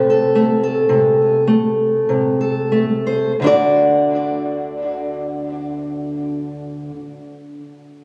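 Rubato in 4/4 at a slow 44 to 57 BPM, this peaceful, gentle folk fragment slows over its first 3.4 seconds, moving from Am/C to D in a D mixolydian setting tuned to A4 = 438 Hz. A fingerpicked steel-string acoustic guitar plays solo from 0.0 to 7.0 seconds, spanning D2 to D5, its warm concert tone sitting up front with a touch of tape echo. This short excerpt from a longer piece was captured on a phone in a large studio with moderate reverb, club ambience and compression.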